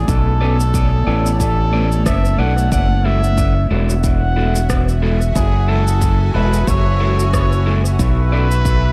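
Ambient dub with a hazy, deep mood, built on a swung feel over Bm9 and F#m9 chords, with a soft, veiled cup-muted trumpet carrying the melody through dub echo and light vibrato in a classical style. Underneath, an up-front fingered electric bass with tube saturation and a layered deep electronic kick anchor the groove, while echoing electronic cabasa and rim click, re-recorded in a large room, sit behind dark, slightly broken-up picked guitar stabs that also trail dub echo. A blurred, detuned granular cloud pad hangs in the background throughout, and from 4.2 seconds a bubbling, resonant stepped-filter texture with chorus joins it in this echo-heavy excerpt.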